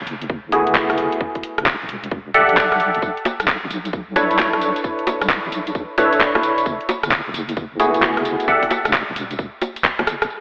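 A hollow, mellow organ stab sits up front through this bouncy, moody two-step garage excerpt, its chorused, percussive hits trailing into a diffuse delay over minor eleventh chords from F#m11 through Em11 and Bm11. Beneath it, a deep, dark wobble bass with its own chorus sits low, while a tight electronic kick anchors a swung garage kit of bongos, handclaps, bright hi-hats, rim clicks and tambourine, its hats, snare and percussion softened by low-pass filters. The dreamy mix is soaked in a lush hall reverb with vinyl crackle and a telephone-like tone, and a drum fill arrives at 10.0 seconds.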